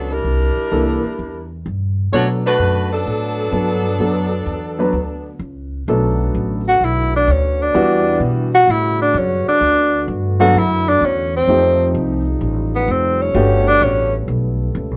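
A mellow, vibrato-laden saxophone section carries the melody over woody pizzicato upright bass in this sultry, brassy big band swing excerpt at 128 BPM in B minor, with clear grand piano accompaniment and its intimate action noise entering just after. The sax section drops out at 5.4 seconds, followed by clear, close-miked trombone section chords from 5.9 seconds and, from 6.7 seconds, a roomy tenor saxophone solo full of scooped notes, all colored by moderate large studio reverb and the worn, warbly pitch drift of old cassette tape.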